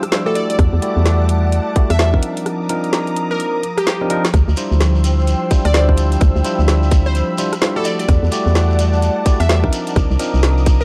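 Late-night and skippy, this two-step UK garage excerpt at 128 BPM with a swung 16th-note feel sets a glassy, detuned wavetable pluck melody with chorus and tape echo over bell-like tine electric piano stabs, a silky string machine pumping softly in the background, a breathy chorused pad, a hollow organ-like FM bass and a tight, up-front electronic kick entering at 0.6 seconds, and a garage kit of woody snare, rim click and metallic hats, with a break from 2.5 seconds ending in a drum fill, a grainy, distant shekere arriving at 4.3 seconds, Em11, Cm11 and Dm11 chords, and a dry, gritty hardware sound in light digital reverb.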